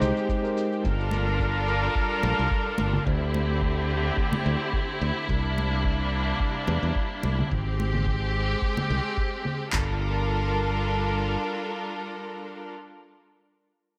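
A relaxed 108 BPM groove in 4/4 with a light swing on the sixteenths sets up this warm sunset chillout excerpt in G dorian, where a dry, overdriven vintage rhythm box with deep kick, handclaps and toms plays alongside layered electronic shaker and congas, with a filter sweep on the drums until 9.7 seconds, plus bright, hard-handed acoustic congas tucked in the background. Up front, a growly fingered electric bass and a lush, bowed studio string section with vibrato and a smooth top carry chords moving from Abmaj7 through Gm7, D7sus4 and C9, while a mellow tine electric piano with digital delay sounds only in the opening second. The strings hold on alone after the bass drops out at 11.4 seconds, all set in a bright 1980s-style digital production with moderate plate reverb.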